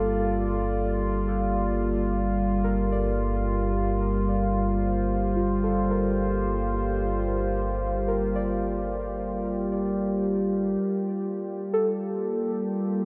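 A warbling, smooth analog pad with chorus sits up front, holding slow-attack sustained chords over a round, deep analog bass on G1 and a very quiet, mellow analog drone, while muted, felt-like synth keys play soft, decaying arpeggios through chorus and tape echo, moving from Bb/G to Gm9 at 10.8 s in this reflective, spacious ambient piece at 66 BPM, cut from a longer work and set in a huge, dark reverb.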